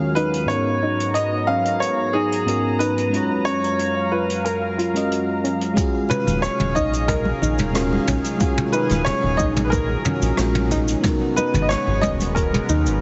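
Warm and smooth, this sunset chillout excerpt opens with a mellow FM electric piano and a lush, warbling unison pad beneath a clear, worn baby grand piano melody, soft round pluck arpeggios and a distant, roomy jazz brush kit, before a deep, overdriven electronic kick and bright congas join at 5.8 seconds and a dark analog bass arrives at 6.3 seconds, the whole mix sitting in a moderate hall reverb with a heavily compressed, radio-like sound.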